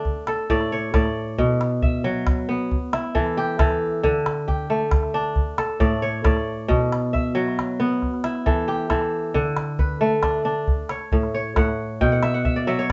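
The rhythm moves in a straight 12/8 at 90 BPM, with a small calabash sitting close and dry beneath the music from 0.1 seconds onward. This is a joyful piece of West African traditional string and xylophone music in D major, taken from a longer performance. A fingerpicked acoustic kora carries the piece in ringing, crisp arpeggios that span A2 to G5 and sit up front with a warm presence. The harmony cycles through A, Bm, Em and D5, shifting into a second section at 9.3 seconds, where the kora plays a short fill from 12.0 seconds over a closing B5. The players share one room with a wet studio ambience and a short reverb tail, and the sound tops out below 7.8 kHz, which gives the recording a soft, rounded upper edge.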